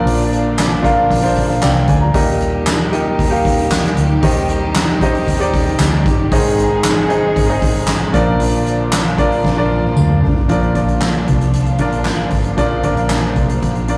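A clear concert grand piano opens this piano-driven pop excerpt together with a lush bowed string section and a round, foam-muted electric bass. The drum kit, played with soft mallets, joins at 0.1 seconds, and the mood is anthemic at a straight 115 BPM in 4/4, in Bb mixolydian. The piano sits up front with an intimate, polished tone, long sustain, deep bass and audible action noise, moving through Bb, Eb, Cm/Eb, Ab and back to Bb. The strings stay in the background with smooth vibrato, while the dark, punchy bass carries an amped vintage character. The kit pairs a fat snare and boomy kick with hi-hat, toms and handclaps in a big-room sound, and a jingly, very quiet tambourine runs until 10.1 seconds. A drum fill from 9.4 to 10.5 seconds leads into a new section, and the whole excerpt has the rough, saturated feel of a rehearsal room, with a wet stone-room reverb.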